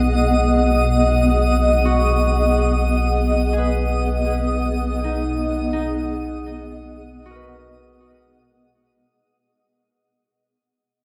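Peaceful and luminous, this ambient passage is a short cut from a longer piece, and it begins fading out at 1.3 seconds, carrying on until about 9.1 seconds. A cloudy, blurred granular pad sits up front, holding mellow, detuned chords that evolve slowly under a moving notch and soak in their own reverb. A concert harp rings out bright, fingerpicked arpeggios, colored by tape echo and set low in the balance. Beneath them, a round analog bass holds a deep, dark low note with a filter pluck, also placed up front. High above, a twinkling granular texture adds a sparkling octave-up shimmer, and a wet spring reverb gives the whole echo-heavy mix a soft, suspended glow.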